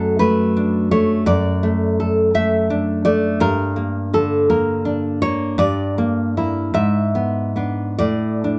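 A fingerpicked nylon-string guitar opens at once on a D/F# chord, playing alone in this short romantic fragment of about 8.6 seconds cut from a longer classical piece. The mood is nostalgic and tender, unfolding at a slow, flexible rubato pace in 6/8. The guitar's tone is full-bodied and deep, and it sits up front, ranging from F#2 to E5. The harmony drifts from D/F# through Gm, Em7b5/G and G#dim before arriving on Asus4 at 8.0 seconds. A moderate studio ambience and a dark, warm production surround the solo, with the instrument tuned slightly below standard pitch at A4 = 438 Hz.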